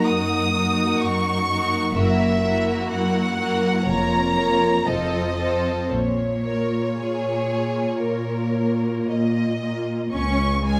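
Rubato and slow at 56-64 BPM in 4/4, this elegiac, solemn classical movement for string orchestra in Bb minor unfolds over chords moving from Ebm/Gb through Gb7 and Bbm/F to F and Bbm before arriving on Db at 10.1 seconds. Up front, the violins carry the melody with a focused, smooth-topped vibrato as a rich second violin line sits beneath, while dark, expressive violas add portamento to the accompaniment. An even, close cello section anchors the bass from the outset, joined at 2.0 seconds by intense, clear double basses with light vibrato, all bowed in a moderate recital hall reverb.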